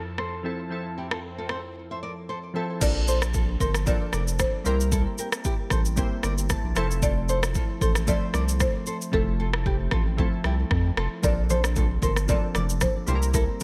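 A bright, 1980s-style digital production with light reverb carries this sunny, joyful afrobeats excerpt in F major at 114 BPM, where glassy, wave-folded keys with chorus, a breathy pad that drops out at 2.8 seconds, a faint electronic swell, a fingerpicked flamenco guitar riff with finger squeak and delay, and an up-front, tape-toned afro-pop drum kit with deep kick, rim click and shaker are joined at 2.8 seconds by a buzzing, woody marimba melody and a thick, saturated sub bass, with the hi-hats muted between 9.1 and 11.2 seconds and ringing vintage congas entering very quietly near the end over chords moving from Fmaj7 to Bbmaj9 and C7.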